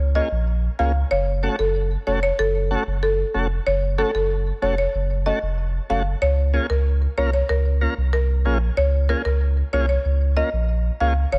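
A deep, round sine sub bass opens this summery, bouncy dancehall excerpt at 94 BPM in Db major, sitting up front in a small room. A buzzing, woody marimba played with medium mallets carries the dry-toned melody through a digital delay, while a smooth, clean tonewheel organ adds quieter accompaniment with vibrato through a slow rotary speaker. The harmony moves from Db6 to Gbm at 1.1 seconds and returns to Db6 at 6.2 seconds.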